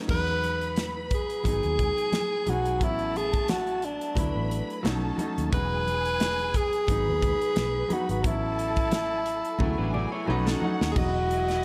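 Smooth and warm, this lush 1970s-style soul excerpt at 88 BPM in E major swings gently over an Emaj7, G#m7, A6, D6, B7 progression. An up-front tenor saxophone carries the melody in a punchy subtone, set over a clear, open concert grand piano, a dark, round foam-muted electric bass and a polished studio drum kit with bright cymbals and a punchy kick. Very quiet, ringing congas and a bowed string section with expressive vibrato fill in the background, while a slightly broken-up, lo-fi electric guitar riff enters at 9.6 s alongside a drum fill, all within light small-room reverb.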